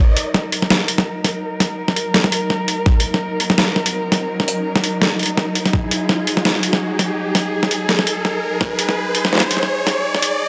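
Cinematic and heavy, this half-time drum and bass excerpt at 167 BPM in Eb minor builds tension across its 10.5 seconds, with a bowed cello section holding sustained, expressive chords with vibrato and portamento under sidechain pumping and a filter sweep while an electronic riser climbs beneath. A compressed, pitched-down boom bap kit of hi-hat and medium-tuned snare sits up front with tape-warm grit, and a thumpy electronic kick lands at 2.9 seconds and again near 5.7 and 8.6 seconds. The whole is dry and gritty in a hardware-recorded sound, opened out by a moderate echo chamber reverb.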